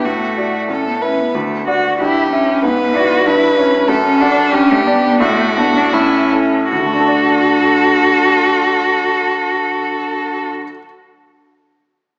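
A rich, smooth violin melody and an expressive cello second line, both with vibrato and the cello with portamento, begin together over clear, intimate baby grand piano accompaniment with audible action noise in this cheerful, graceful fragment of a quick classical-period piano trio movement in 2/4, played with rubato and slowing between 3.3 and 6.7 seconds before a brief new section arrives at 6.7 seconds, the whole heard through a wet scoring-stage reverb and a small-speaker sound.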